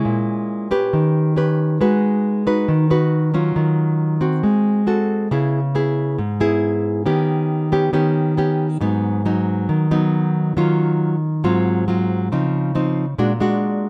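Bossa nova excerpt for solo nylon-string guitar, intimate and wistful, its small, fingerpicked acoustic tone sitting up front in light reverb as it moves from an opening passage into a second section at 5.3 seconds through jazzy chords like G#m7, D#m9 and C#maj9.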